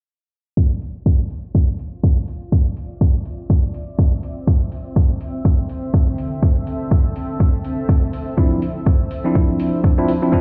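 Hypnotic and moody, this deep house excerpt opens at 0.6 seconds with a deep, layered electronic kick drum sitting up front, joined by a faint layered hi-hat, while a cloudy, blurred granular pad fades in from 2.2 seconds, evolving with its own built-in reverb and sidechain pumping over Dm9 and Am/D harmony. At 8.4 seconds a bright, clean, bell-like tine electric piano enters up front with sidechain-pumped stabs that trail through analog delay. The whole excerpt sounds as though played through a big sound system in a bare stone room, heard through a low-pass filter with a filter sweep running throughout.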